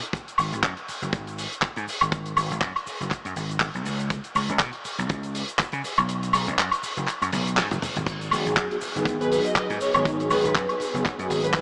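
A punchy, amped vintage slap bass drives this sensual, cosmic nu-disco excerpt in G# minor at 121 BPM with a light 16th-note swing. It rides over a dry, tight kick and a damped 70s kit with a fat snare, handclaps, hi-hat, shaker, toms, woodblock and crash. The kick drops out at 6.1 s around a drum fill, then mellow, detuned sawtooth synth brass with chorus, phaser and a filter sweep arrives at 8.3 s, and a dark, woody, distant violin section carries the melody from 9.2 s, all bathed in a huge, dreamy reverb with a small-speaker sound.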